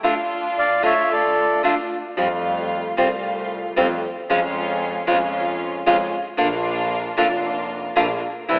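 A tense, dramatic tango fragment at 114 BPM in a rubato 4/4 opens with full-bodied, fingerpicked classical nylon-string guitar, its fresh strings and finger squeak up front, alongside dark, even bowed stabs from a chamber string section, while a reedy bandoneon sings a brief melody from 0.6 to 1.6 seconds. At 2.2 seconds a single bowed double bass enters, nasal and earthy with light vibrato, as the harmony moves from D minor through Fadd9 and Db/F to Bb. The recording sits in a wet concert-hall reverb and comes through worn, warbling cassette tape with pitch drift and a telephone-like sound.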